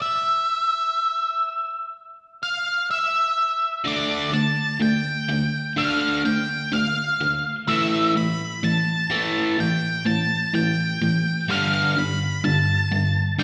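A dark, fuzzed octave lead guitar carries the melody up front in this brooding, melancholic slow rock passage at 63 BPM, joined at 3.8 s by a bright, crunchy, double-tracked overdriven guitar riff with spring reverb as the music builds over Dm, A5 and G5 chords inside the lingering ambience of a concert hall.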